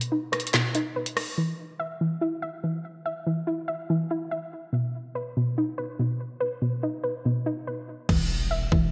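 Drill hip hop at 143 BPM in a half-time feel, this tense, menacing passage from a longer piece rides a soft, round, dark pluck playing chorused, delayed arpeggios, while an electronic drill kit with a hard-clipped kick, woody snare, metallic hats, handclaps, rim clicks and crash under gated reverb hits briefly at the start and returns at 8.1 seconds, joined by a punchy, heavy 808-style bass on a low E and an electronic impact in the background, inside a lightly reverberant, bright 1980s-style digital production.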